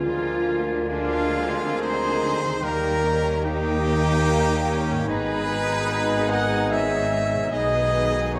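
An up-front, warm trumpet section punctuates this melancholic, elegiac classical excerpt in G# minor with stabs, unfolding at a rubato 73 BPM in 3/4 over chords that move from A#7/D through D# to G#m. Veiled, con sordino violins carry the melody while a second violin line, a clear oboe, a bright clarinet and a very quiet, pure-toned flute section add secondary lines, with a mellow bassoon and muted violas accompanying, a French horn section and trombones holding sustained chords, and a ringing concert harp playing arpeggios. Dark tuba, double basses and cellos anchor the bass, barely audible timpani sound from 2.6 to 3.8 seconds, and a recital hall reverb gives the sound a wet bloom.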